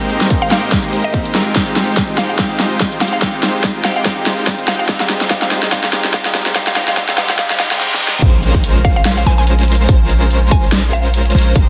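Future bass at 144 BPM with a half-time, swung feel, euphoric and lush, cut from a longer piece: a thick, compressed supersaw riff pumps under a low-pass filter sweep while a clean semi-hollow guitar with tape echo, a faint shimmering pad over Abmaj9 and Abmaj13 chords, a woody mallet-like pluck melody with dub echo, a punchy layered kick and a big-room kit with a huge snare and metallic hats build toward a reverse cymbal, then at 8.2 seconds the drop lands on Bbm9 with an impact, a boomy 808-style bass and an airy, dreamy chorused lead arpeggio, all in a moderate digital room and a dense, heavily limited master.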